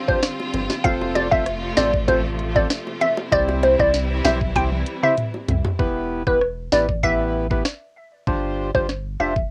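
A hazy, cassette-worn home recording in a tight booth carries this sultry, bouncy dancehall excerpt at 97 BPM in E phrygian, where a glassy, crystalline wavetable pluck leads up front over hollow, chorused organ stabs, a deep sine sub bass with a pitch-drop attack, and an electronic island pop kit with a knocking kick, sharp snare and gritty 12-bit sampler texture. Clear bowed strings hold sustained chords under sidechain pumping while round, low-tuned bongos sit in the background, both dropping out at 5.8 seconds after a drum fill that begins at 4.6 seconds. From there a break rides on the pluck, organ, bass and drums through Em back to G7sus4.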